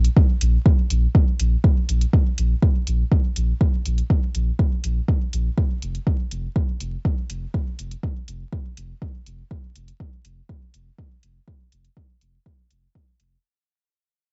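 Heard as a home cassette recording with vinyl crackle, a dull top end and a dry room, this dub techno excerpt at 122 BPM in straight 4/4 feels cavernous and hypnotic, fading out across its full 13.4 seconds. A soft, round sub bass moves between F1 and Bb1 with a fast attack and sustained notes, pumping from sidechain compression and sitting up front. Beside it an up-front, deep overdriven kick drum enters at 0.2 seconds, while a layered electronic hi-hat, also overdriven, runs through tape saturation and a small-room re-recording.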